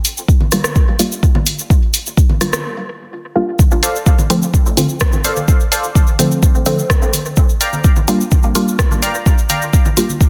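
Deep and nocturnal, this dub techno excerpt moves in a straight 4/4 pulse built on a layered electronic kick that sits up front and dominates the mix. Around it, an analog drum machine re-recorded in a large room supplies hi-hat and rim click, with soft clipping on the snare and dub echo. A grainy, bright tube shaker sits close, while overdriven, layered congas stay in the background, pumping with sidechain and trailing dub echo. A muted sawtooth chord stab with a fast, decaying filter pluck carries the harmony up front, colored by chorus, phaser, sidechain pumping and echo, moving through Gm7, Dm7 and back to Gm7. After a short break from 2.6 to 3.6 seconds, a filter sweep moves across the stab, and a crisp, detuned wavetable riff enters at 3.8 seconds with dark, full-bodied unison tones, all set in light digital ambience under a dense, heavily limited master.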